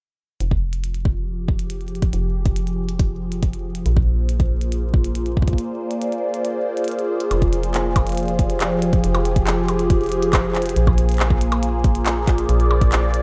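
A straight 4/4 pulse at 139 BPM drives this eerie, cerebral IDM passage in F minor, tuned to A4 = 438 Hz and cut from a longer piece. A deep, up-front electronic kick anchors the groove, while a glitchy kit of handclaps, clicky hi-hats and percussion blips sits lower in the mix with a small-room ambience. A metallic FM bass with a fast, decaying attack rumbles darkly in the low register, beneath a swirling, detuned sawtooth pad whose slow attack, phaser and chorus give it an evolving shimmer as it sustains chords alternating between Fmadd9 and Bb7. Filter sweeps move across both the bass and the pad through the opening stretch, with a break arriving at 5.6 seconds before a new section begins at 7.3 seconds. Light digital reverb frames a rough home-demo mix.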